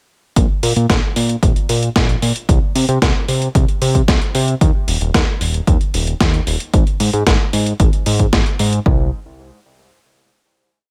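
A fat, detuned sawtooth bass sits up front in this short, complete italo disco piece, jumping between octaves from Eb1 to C3 with a fast attack and decaying notes. Beneath it, a punchy electronic kick drives a four-on-the-floor pulse at 113 BPM in a straight 4/4, re-recorded in a small room and treated with studio reverb. A gritty, compressed sampler-style kit adds closed and open hi-hats and a medium-tuned snare, overdriven and placed up front in a disco machine beat, with its own studio reverb. Set in C minor within a digital ambience, the mood is bittersweet and nostalgic. The parts enter together at 0.4 seconds for a single verse, which gives way at 8.9 seconds to a final note lasting until 10.9 seconds.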